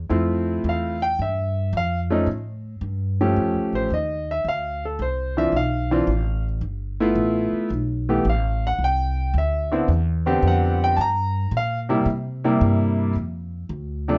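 Swinging and relaxed, this short jazz passage in the small-group swing and bop style moves at 110 BPM in 4/4 with a strong eighth-note swing in C major, tuned a touch below standard pitch. A woody, pizzicato upright bass on steel strings sits up front, while a clear, intimate grand piano with natural tone and audible action noise carries the accompaniment through a progression from Fmaj7 and Aaug7 to Dm9, G13, Cmaj9 and C7. Light reverb surrounds the pair, and the piece lands on an F5 chord at 13.2 seconds before this fragment of a longer piece is cut off.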